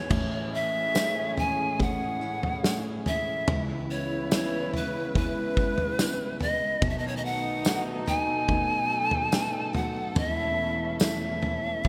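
Pop ballad in a hopeful, heartfelt mood, cut from a longer piece, where an airy bamboo pan flute carries the melody up front with vibrato and a crisp, chiffy attack over a loose indie drum kit with a punchy kick, dark cymbals and gated reverb. Behind them sit a soft felt-muted upright piano with audible action noise, a lush, woody string section holding sustained chords, a full-bodied steel-string acoustic guitar picking delayed arpeggios, and a mellow French horn section playing a second line, while a jingly tambourine enters at 1.0 seconds. The chords move from Amaj7 through C#m7 and B7 to A/E, all set in a moderate plate reverb with bright 1980s-style digital production.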